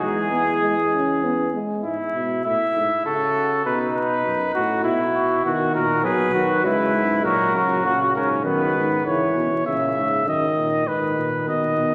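A wet concert-hall reverb surrounds this short brass passage, and a layer of vinyl crackle runs beneath it, giving the recording an aged quality. It is a solemn, contemplative classical canzona in triple metre, built from imitative lines for four brass instruments. A warm, softly attacked trumpet carries the melody up front, while a clear flugelhorn with a vintage tone shapes the second line until it falls away at 9.0 seconds. The euphonium, also gentle in attack, sounds the accompaniment at the start, drops out at 1.8 seconds and returns at 5.5 seconds. Underneath, a mellow bass trombone carries the bass throughout, its vintage colour matching the flugelhorn's and grounding the harmonic movement.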